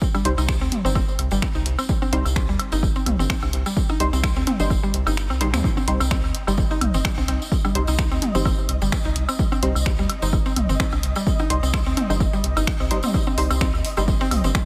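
Hypnotic and cool, this minimal techno excerpt in C minor at 128 BPM swings gently over a punchy electronic kick, a jingly tambourine, a small-room analog drum machine with finger snaps and hi-hat, and layered blips, woodblock and toms through analog delay, while a rubbery square bass pumps beneath a woody, mallet-like synth pluck and muted, deep dub chord stabs with cassette-tape coloring; the kick drops out briefly around 5.2 seconds for a very quiet zap, and from 6.2 seconds a flickering, grainy texture adds a mellow, reverberant layer in the background.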